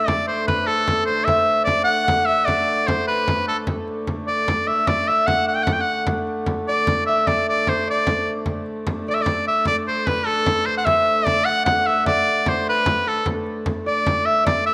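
A wet echo-chamber reverb surrounds this rustic, festive medieval dance excerpt in D mixolydian, where a bright, vibrato-laden shawm leads up front over a fingerpicked, ringing concert harp second line, a dark, nasal hurdy-gurdy drone and a close, dry frame drum struck with hard hands, all moving at 100 BPM in a straight 6/8.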